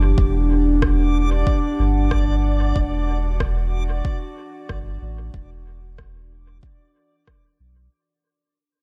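Hazy and deep, this ambient dub excerpt at 93 BPM in E minor rests on a single Em9 chord, with a warbly, nostalgic, lo-fi tape-like pad carrying chorus and reverb, a round sine sub bass up front, and a reversed, detuned backwards texture glowing brightly, while a layered electronic kick drum enters at 0.2 s and an overdriven, filtered electronic rim click joins at 0.8 s trailing dub echo, all in a digital ambience as the whole fragment fades out over its 7.9 seconds.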